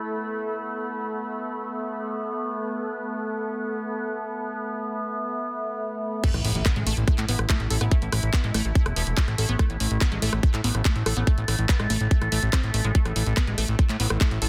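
The fat analog bass stands out in this intense, psychedelic trance excerpt at 143 BPM in 4/4, a thick, saturated sawtooth-and-square tone with a fast filter pluck that sits up front just after the drop lands at 6.2 seconds. Before that, an overtone-sweeping drone holds sustained chords with resonant, moving harmonics, chorus and built-in reverb, joined by a warbling, nostalgic lo-fi pad whose detuned sawtooth and triangle layers drift through chorus and phaser until the drop. At the drop a tight, layered electronic kick pushes to the front, backed by a produced garage kit of crash cymbal, handclaps, hi-hat and rim click, while a very quiet electronic impact marks the arrival. Alongside them a lush, punchy unison pluck carries a riff, its detuned sawtooth and noise layer snapping with a short decay, a moving notch and digital delay. The drone, pad and pluck all breathe with sidechain pumping, and the whole sits in light digital ambience under a dense, heavily limited modern master.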